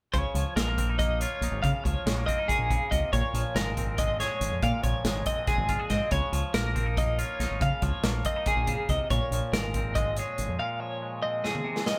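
A full band playing together in one room opens this intricate, wistful math rock and midwest emo passage in 7/8, cut from a longer piece. A clean, warm twelve-string electric guitar with tremolo spins compressed arpeggios up front, over a bright, twangy electric guitar comping on a Bbm11 chord and a growling, overdriven fingered bass that drops out at 10.6 seconds. An acoustic studio drum kit with a pumping room sound, a medium-tuned snare and a punchy kick sits up front and closes with a fill from 11.4 seconds, all in a moderate studio reverb.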